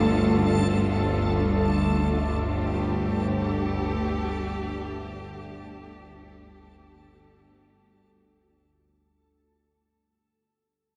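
In free time, this desolate, cavernous dark ambient drone excerpt, tuned to A4 = 441 Hz, rests on a Dm/G chord and fades out across its full 8.7 seconds. A lush studio cello section sits up front with smooth, vibrato-rich sustained chords, above a low, resonant sawtooth-and-sine drone whose moving overtones sweep through chorus, phaser and built-in reverb. High above, a reversed, swelling granular texture adds a dreamy, detuned shimmer, all within a dark production bathed in a cathedral reverb.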